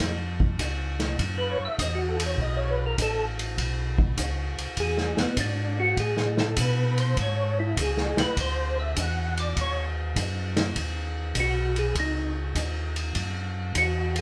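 A mellow, round percussive tonewheel organ takes the solo from 1.4 s, its clean tone shaped by third-harmonic percussion, chorus vibrato and a slow-turning rotary speaker, in this soulful, late-night soul jazz organ trio excerpt with a swung feel. Underneath, a second tonewheel organ carries the bass line with a piping, scooped, lightly overdriven sound, chorus vibrato and a stopped rotary speaker. Up front, a vintage acoustic kit brings dark cymbals, a medium-tuned snare, a punchy kick and a pumping small-room character, all captured live in one room with moderate studio ambience.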